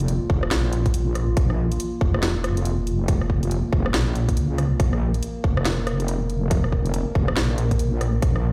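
Swung half-time 16ths at 140 BPM in 4/4 drive this heavy, brooding deep dubstep fragment, cut from a longer piece, where an up-front, saturated sawtooth wobble bass with chorus rolls between F1 and Db2 over a Bb5 chord, a dark, detuned analog pad with chorus sustains slow-attack chords with a moving notch, a garage kit adds a cracking snare, rim clicks and hi-hats, and a tight electronic kick enters at 0.3 s, all played through a big sound system in a bare room with large studio reverb.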